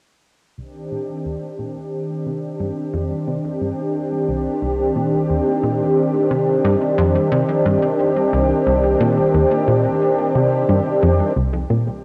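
A steady, straight 89 BPM pulse in 4/4 carries this short fragment of ambient, sequencer-driven space music in C minor, expansive and cosmic in mood, as a punchy, funky sawtooth bass riff with tape echo fades in from 0.6 seconds beneath a thick, nasal, up-front unison pad holding sustained chords that open on Cmadd9. Near the close, at 11.4 seconds, a very quiet, warbling lo-fi pluck with chorus slips in brief arpeggios. The whole cassette home recording sits in a wet spring reverb.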